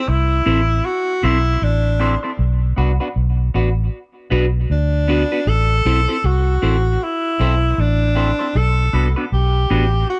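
Roots reggae at a laid-back 78 BPM in A dorian, serious in mood, with a swung sixteenth-note feel over a cut from a longer piece that moves between Am and Bm. A tenor saxophone carries the melody with light vibrato and tape echo, sounding roomy yet up front, while a dark, foam-muted fingered electric bass sits round and punchy at the front of the mix. A clean, picked electric guitar fills in the accompaniment through phaser and tape echo, all within a light reverb.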